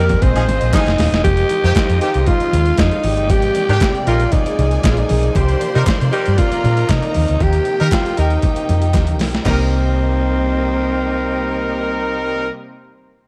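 A straight disco groove rides on a gritty, overdriven, sampler-style drum kit with a thumpy kick and high-tuned snare, joined by a round, punchy hollow-body electric bass up front, very quiet bright congas and crisp group handclaps, with drum fills at 0.7 and 8.9 seconds before the kit drops out at 9.6 seconds. Over this, a breathy, raspy alto saxophone carries the sultry melody with tape echo, while a distant, tight horn section punches stabs and two lush bowed string sections sit in the background, one playing a clear second line and the other holding smooth sustained chords. The dark, glamorous mix has light reverb and a studio ambience, and the excerpt is cut from a longer piece.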